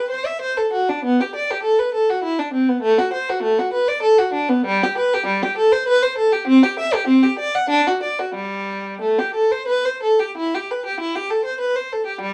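Serene and flowing, this brief passage from a longer classical work is a baroque-style suite movement for unaccompanied violin in triple metre, played with a supple rubato. A single bowed violin carries everything alone from 0.0 to 12.3 s, its tone rich, smooth and even, coloured by vibrato, ranging from G3 up to F#5. The instrument sits up front, yet a light reverb lends it a slightly distant glow. The opening material returns at 10.3 s, giving the fragment a sense of gentle repetition before it is cut off. The production leans dark, and the violin is tuned slightly above standard pitch at A4 = 441 Hz.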